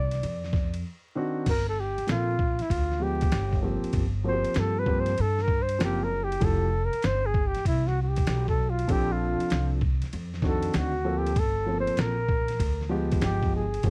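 Swung sixteenths in 4/4 carry this cool, nocturnal jazz-hop passage, cut from a longer piece, where a gritty, pitched-down sampler-style kit with a thumpy kick sits up front beside a woody pizzicato upright bass, a dark, long-sustaining baby grand piano enters at 1.2 seconds with mellow extended chords, and a breathy, whispered flugelhorn with vibrato and scooped notes takes an intimate solo from 1.5 seconds, captured in a dry, close 1970s-style studio sound dusted with vinyl crackle.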